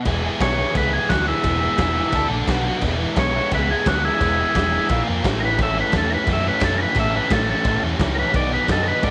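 Garage rock at 174 BPM in E mixolydian, rowdy and raw, with a biting, double-tracked overdriven guitar riff up front with spring reverb, a round, dark picked electric bass, a gritty acoustic drum kit with a fat snare and punchy kick in a bright stone room, and a buzzy vintage combo organ carrying the melody with light vibrato from 0.4 seconds, while the harmony moves from E through D5, B5, A#5 and A to B in this short cut from a longer piece.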